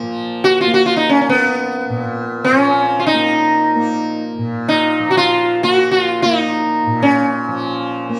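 Unfolding in free time, this brief Hindustani classical excerpt in raga Bhairavi on Bb sets a mellow, softly plucked tanpura drone shimmering beneath from 0.0 seconds, while from 0.4 seconds an up-front sitar, plectrum-plucked with buzzing sympathetic strings, traces a meditative, longing melody between Cb4 and Gb4, all bathed in a recital hall's lingering reverb.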